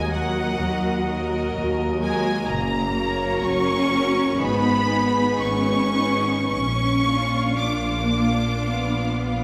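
In a rubato 4/4 at 53-64 BPM, this elegiac, solemn excerpt from a slow romantic movement for string orchestra in Eb minor sets an intense, up-front first violin section singing the melody high with vibrato over a smooth, even second violin line, a focused viola accompaniment, lush bowed cellos and a light-vibrato double bass section, all five playing throughout the 9.4 seconds as the harmony moves through Ebm, Gb, Abm and Bb in a reverberant concert hall.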